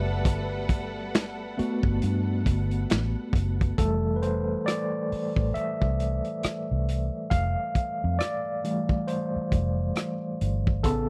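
A barky, overdriven tine electric piano with fast tremolo solos from the opening over a round, foam-muted fingered electric bass and a lush bowed string section that drops out at 3.7 s, while a crunchy, saturated breakbeat kit of kick, snare, rim clicks, hi-hat and finger snaps joins at 0.3 s, giving this relaxed 68 BPM neo-soul R&B fragment, with its swung sixteenths, a dry, close 1970s studio sound as the harmony moves from Gmaj9 to Fmaj9 at 3.8 s.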